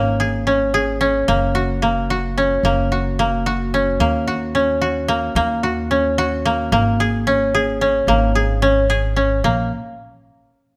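A koto and a pizzicato upright bass begin together, setting an urgent, hypnotic pulse in 5/8 at 221 BPM counted in eighths. This is contemporary instrumental chamber music, tuned to A4 = 436 Hz, with a straight feel. Played with fingerpicks, the koto sits up front, dry and woody, running arpeggios through Absus24, Gb and Ebm7 before circling back to Absus24. Beneath it, the steel-strung bass adds a thumpy, warm low end in a lower supporting role. The recital hall lends a wet reverb with a 1.4 s decay. Both instruments stop at 9.7 s, just after the harmony drops away at 9.4 s, in this passage cut from a longer piece.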